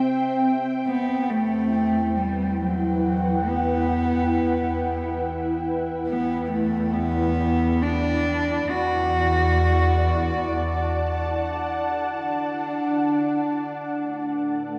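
An intimate, bowed cello sings a melancholic melody from 0.9 to 10.9 seconds, played sul tasto with light vibrato and trailed by shimmer reverb and dub echo, over an airy, chorused pad whose filter sweeps and a rich bowed double bass section fading in on a low E, all set in a spacious, free-time ambient piece in E minor that drifts through a wet spring-reverb haze until the pad rings on alone to 14.8 seconds.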